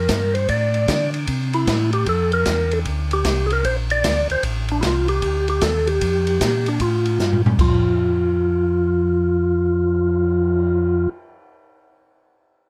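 A dry, closely miked sound puts this swinging, soulful soul jazz organ trio up front, heard in a short cut from a longer piece at 152 BPM in 4/4, with swung eighths in F major. The melody comes from a percussive tonewheel organ in its middle register, soft and flute-like, with third-harmonic percussion, key click and a fast rotary speaker. A second tonewheel organ carries the bass line, piping and scooped, colored by chorus vibrato and a slow rotary speaker. Beneath them an acoustic jazz kit in a small room sounds dark and smooth, with a medium-tuned snare, boomy kick and rolled-off top, moving among ride, hi-hat, crash, cymbal swell and toms. The harmony runs through a rootless F6/9, C6, Bbadd9 and F13 before a drum fill at 7.2 seconds leads into a new section at 7.6 seconds where the chords drop away.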